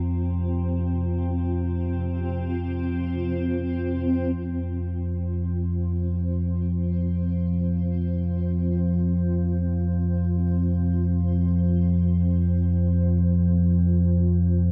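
A deep, ominous rumbling drone sits up front from the opening on an F5 chord, alongside a mellow, blurred granular cloud pad of sustained chords and a very quiet, bright bronze singing bowl that rings with slow metallic beating until 4.4 s, after which the pad fades in through 14.7 s, unfolding in free time within a wet cathedral reverb in this desolate, unsettling dark ambient passage cut from a longer piece.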